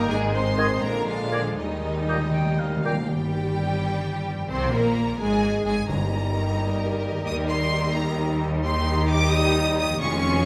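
Classical symphonic excerpt in Eb major, dramatic and restless, moving in a rubato 6/8 at 78-89 BPM, where a close, vibrato-laden violin section sings the melody with expressive portamento over lush background violins, violas, cellos and a focused double bass, warm French horns, ringing thumb-plucked harp arpeggios, and a brief opening cluster of clear trombones, pure silver flute, vintage-toned oboe, bright clarinet and mellow bassoon that drops out by 3.0 seconds, while round soft-mallet timpani add a fill from 1.6 seconds and return near 5.9 seconds, all bathed in a recital-hall reverb.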